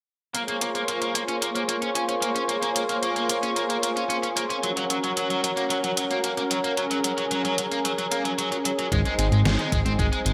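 Synthwave excerpt at 112 BPM in Bb minor, nocturnal and nostalgic, where a lush, airy unison pad holds sustained chords with chorus, sidechain pumping and a filter sweep, a biting overdriven guitar plays a double-tracked riff through chorus, low-pass filter and digital delay, and a detuned 8-bit drum machine plays hi-hat and a fat snare, until a thick sawtooth analog bass and a thumpy electronic kick arrive at 8.9 s, all set in wet plate reverb with bright 1980s-style digital production over Bbm7, Gb and Ab.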